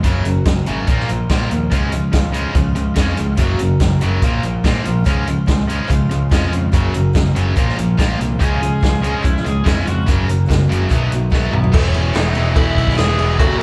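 Classic rock at 144 BPM in Db major with a confident, swaggering strut, this excerpt from a longer piece is driven by a dark-cymbaled vintage drum kit up front with a punchy kick, a growling overdriven picked bass, a tight distorted guitar riff alongside a cranked stack guitar riff in the background, and a boxy picked swing-style acoustic guitar tucked behind them. A biting lead guitar line cuts in at 8.4 seconds, a raspy, gritty tenor saxophone takes the melody with scooped notes and vibrato from 11.5 seconds as a drum fill leads into a new section, and a close, dry cowbell joins at 11.7 seconds, all in the moderate reverb of a large studio room with the band playing live together.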